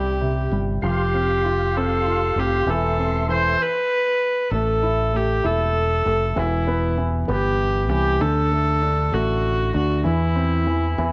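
A bowed solo viola carries the melody up front, its sul tasto tone pure and floating with a soft attack, singing between E4 and C5 across this aching, melancholic pop ballad excerpt in six-eight. The tempo sits at 65 BPM counted in dotted quarters, with a straight feel in A minor, tuned to A4 = 441 Hz. Beneath it, a baby grand piano supplies natural-sounding accompaniment in the middle register, while a fingered electric bass, direct and amped, sits close and present from E1 to E2. A mellow, flute-like tonewheel organ drifts in the background from 0.8 to 3.6 seconds, holding sustained chords colored by chorus vibrato and a slow rotary speaker. The harmony moves from Fsus2 to Am/E before a brief break in the chords, then a second section from 4.5 seconds passes through Em, D and C/E, all set in light reverb and studio ambience.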